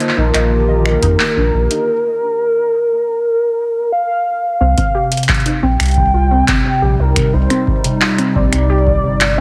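IDM at 88 BPM in a straight 4/4, this piece, cut from a longer work, sits in C dorian and feels cerebral and melancholic. A velvety, full-bodied synth lead carries the melody up front with vibrato, chorus and tape echo, floating over a hollow, flute-like pad that holds dark sustained chords. A warbling, lo-fi pluck with a nasal edge plays arpeggios through lush chorus and digital delay, while a round sine sub bass, thickened by tube saturation, anchors the low end. A booming analog drum machine with finger snaps, handclaps and metallic hi-hats sits up front, joined from 1.0 seconds by a deep electronic kick, both re-recorded in a large room. After a break from 1.9 seconds, the harmony shifts from Ebadd9/Bb to Cmadd9 at 4.6 seconds, and the mix carries a heavily compressed radio sound with light reverb.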